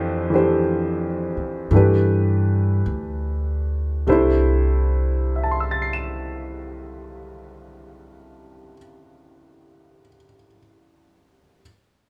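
A clear concert grand piano with deep bass and a woody, growly pizzicato upright bass open this late-night, romantic jazz ballad together, both up front in a large studio room with moderate reverb, as a band playing live. The swung 4/4 pulse sits between 47 and 58 BPM and slows over the first 4.1 seconds while the harmony moves from Fmaj9 to G69 before settling on C6 in C major. The bass drops out at 8.7 seconds, leaving the piano alone until this cut from a longer piece ends at 11.6 seconds.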